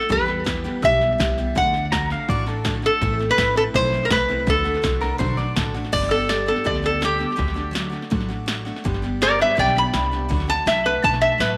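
A metallic, nasal lap resonator guitar with tape echo carries the melody up front in this down-home, nostalgic honky-tonk and classic country excerpt at 164 BPM in G major, taking a steel-bar solo from 5.9 s over a bright, jumbo picked acoustic guitar, a woody, thumpy pizzicato upright bass, a punchy analog drum machine re-recorded in a small room, and brief twangy pedal steel lines with volume swells, all set in moderate plate reverb.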